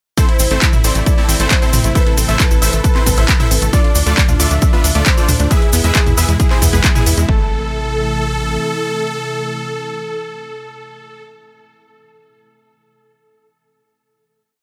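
The recording is dry, with little reverb, giving this bittersweet, euphoric uplifting trance piece an immediate, upfront sound. It opens straight into the drop: an overdriven, layered kick pounds four-on-the-floor, while a tape-warm analog drum machine adds closed and open hats, claps and mid toms, and a grainy cabasa plays hand-played sixteenths in the background. A tight, nasal sequencer bass with tube saturation and sidechain pumping gallops in sixteenths beneath huge, lush, detuned supersaw chords that carry a repeating riff over a pedal note, pumping and echoing through a delay. A bright, brilliant baby grand piano doubles that anthem line an octave higher at a very quiet level, joined by a velvety synth lead with chorus, vibrato and digital delay, a silky analog string pad with ensemble chorus, and a round, detuned analog pluck running a 32-step arpeggio. At 7.3 seconds the drums and cabasa stop, the pluck follows, and the bass drops out at 8.6 seconds, leaving the supersaws, piano, lead and strings to ring out on a final chord.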